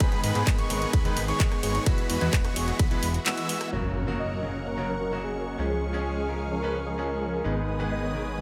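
A straight pulse from an overdriven, punchy kick that drops out at 2.9 seconds and a layered pop kit of handclaps, hi-hat, ride and rim click with filtered hats and cymbals drives this anthemic, triumphant festival progressive house drop, where huge detuned supersaw chords, a fat analog bass, a bright grand piano with audible action noise and a lush background pad all pump with sidechain, a thick chorused unison lead arpeggiates high until an electronic impact lands at 3.7 seconds, and an airy, dreamy lead then carries the melody through light digital ambience.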